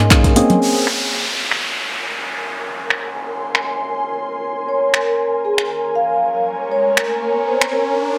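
Hypnotic and smooth, this deep house excerpt at 118 BPM in Bb minor opens on a hollow, chorused organ stab over an Eb7sus4 chord, with a brief flicker of very quiet brushed kit and background congas and bongos, before the up-front analog drum machine of snaps, claps and filtered hats carries the groove, a moody, nasal analog pad hums beneath, an ethereal airy pad drifts in at 2.0 seconds, a ringing soft-mallet vibraphone melody with digital delay returns at 4.7 seconds over Bbm9, and a downlifter and riser sweep through the small, reverberant room.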